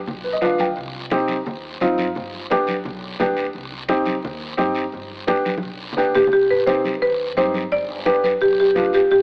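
A driving, straight 4/4 cumbia rhythm at 173 BPM comes from bright, damped congas, a raspy guiro and woody pizzicato upright bass, while an intimate, slightly detuned upright piano with audible action noise opens with a fill and carries the passionate C harmonic minor accompaniment up front, a drum fill arrives at 5.5 seconds, and a buzzing, dark marimba takes the melody from 6.2 seconds, the whole excerpt coloured by an AM radio sound and moderate plate reverb.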